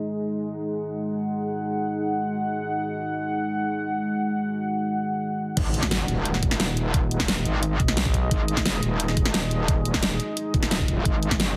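Aggressive and tense, this dark technical drum and bass excerpt runs at 175 BPM in a straight 4/4, cut from a longer piece. It opens on a deep, moody ambient pad alone, its detuned sawtooth unison and sub octave sustaining chords with a slow attack, long release, chorus and built-in reverb, all sitting mellow and up front with sidechain pumping. At 5.6 seconds the drop hits with a very quiet electronic impact, as a knocking, tape-warm electronic kick and a layered dubstep kit with a huge snare, hi-hat and crash cymbal arrive. A metallic wobble bass enters at the same point, bright, distorted and overdriven with chorus and sidechain pumping, while a thick, growling FM bass cuts in briefly at 7.8 seconds. The mix sits in a moderate digital room and carries a heavily compressed, radio-like sheen from multiband compression.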